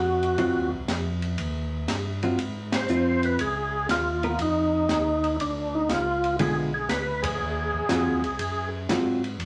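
A gritty, overdriven tonewheel organ melody with a percussive second-harmonic attack and slow rotary speaker opens this soulful, greasy soul jazz organ trio fragment at a swung 120 BPM in Ab mixolydian, over a lightly driven organ bass with audible key click, joined at 0.2 seconds by an acoustic jazz kit with dark cymbals, a high-tuned snare and boomy kick, and then by a clean, fingered hollow-body electric guitar accompaniment up front, with the band hitting accents at 2.6 and 7.1 seconds in a wet club reverb.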